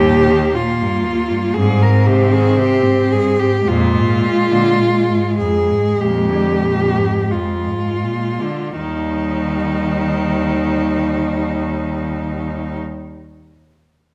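A rich, vibrato-laden single cello sings the smooth, up-front melody in this tender, lyrical classical excerpt for cello ensemble in Eb major, moving with rubato at 40-62 BPM and slowing through the opening 8.8 seconds, supported by a soft-attack, sul tasto second cello with an airy, intimate bow, an intense accompanying cello in the low register, and a focused, up-front bass cello, all four players bowing in a moderate recital hall reverb.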